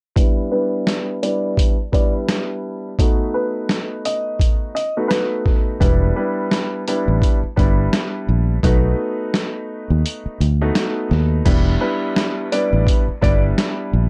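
Gritty and dark, this short cut of boom-bap hip hop in E minor rolls at 85 BPM with a swung feel, as a mellow, deep-voiced concert grand holds the Em7 and B7 accompaniment beneath a woody upright piano melody, a compressed, pitched-down sampler drum kit with a thumpy kick drops its kick from 10.0 to 11.5 seconds during a filter sweep, and a round, foam-muted fingered electric bass enters up front at 5.8 seconds, all in a dry, gritty recording.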